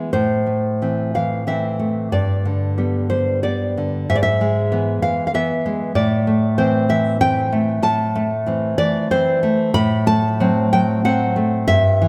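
Romantic solo classical guitar in A minor and 3/4, passionate and intimate, with a rubato pulse drifting between 84 and 98 BPM, the full-bodied, fingerpicked nylon-string guitar sitting up front across a range from G2 to B5, tuned slightly low to A4 = 438 Hz, moving through Am, G, E/G# and back to Am before closing on F#dim/A at 9.8 seconds, all bathed in a moderate concert-hall reverb in this 12-second portion cut from a longer piece.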